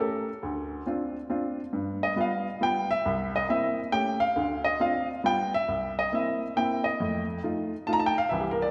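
A swung three-beat pulse at 137 BPM gives this short jazz waltz fragment, cut from a longer piece, a playful, lilting bounce. A lone baby grand piano carries everything, ranging from C2 up to Bb5 in C mixolydian, tuned to A4 = 441 Hz. Its tone is intimate and natural, with short sustain, audible action noise and an up-front presence that places the keys close to the ear. A concert hall reverb, roughly 2.0 seconds long, surrounds the instrument with a churchlike bloom. The harmony moves through Dm7, G7, C7 and A7, then back through Dm7 and G7, before the phrase begins again at 5.7 seconds on C7 and moves to F7, closing at 8.7 seconds.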